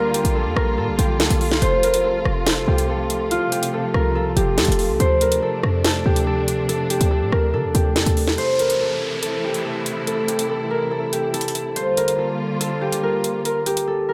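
Set in a digital ambience, this short drill excerpt sounds menacing and ominous, with a half-time feel in 4/4. A fingerpicked concert harp carries the melody up front, its ringing acoustic tone trailed by delay. Behind it, a dark, distant symphonic string section holds lush bowed chords with woody vibrato, moving through Bb6, F and Dm7 to Am before returning to Bb6. The electronic drum kit sits up front with a sharp snare, metallic hi-hats and rim clicks, and a tape-warm edge. A punchy, tight 808-style bass with a sine core, a noise layer and a fast, decaying attack drives the low end until 8.4 seconds, when it drops out and an electronic downlifter enters, lasting until 11.8 seconds.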